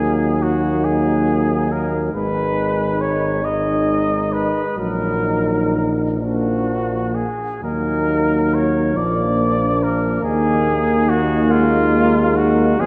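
A dark production steeped in a wet church reverb gives this brief brass-band hymn a solemn, elegiac cast, unfolding freely in 6/8 at a slow 41-47 BPM in Eb minor. An up-front cornet sings the melody with vibrato, a soft attack and a vintage tone, while a French horn section holds a second line in the background and euphonium and trombone supply accompaniment with light vibrato. Beneath them a distant, roomy tuba anchors the bass through all 12.9 seconds as the harmony moves from Eb minor through Ab minor and Bb, arriving on an Eb5 chord at 10.2 seconds.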